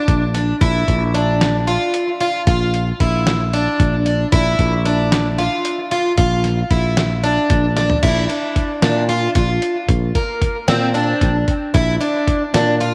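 Progressive instrumental band music in 7/8 at 226 BPM (eighths), driving and bright in Bb lydian, where a shimmering, octave-doubled plugged-in twelve-string acoustic guitar picks up-front arpeggios through tape echo, a growly, punchy fretless electric bass sustains beneath it, and a gritty, compressed sampler-style drum kit with a thumpy kick and fat snare adds overdrive and a fill at 7.8 s before the music moves into a new section at 8.0 s, all set in a moderate echo-chamber reverb in this excerpt cut from a longer piece.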